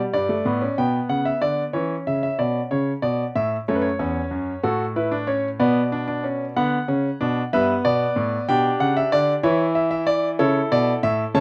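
A clear, up-front concert grand piano carries this joyful, elegant baroque-style four-part fugue alone, moving in a straight 12/8 at 62 BPM in G major with a vintage character and a deep bass reaching down to E2. The harmony passes from G through a rootless Aadd9, F#m and Bm, then back to G before settling on E5 around 9.4 seconds. Close, detailed miking and light reverb keep the lines distinct in this 11.4-second cut from a longer piece.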